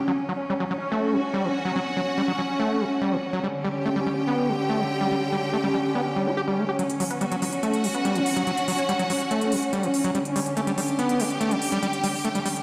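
Heard through a big sound system in a bare stone room with a lush hall reverb, this driving psychedelic trance cut pairs a gritty, squelchy overdriven acid bass riff with tape echo, a bubbling stepped-filter pad holding sustained chords, and an intense bowed string section with vibrato, before a build-up at 6.8 seconds brings a filter sweep on the bass, smooth overdriven electronic hi-hats, and, from 7.1 to 9.0 seconds, a juicy detuned blip pluck tucked in the background.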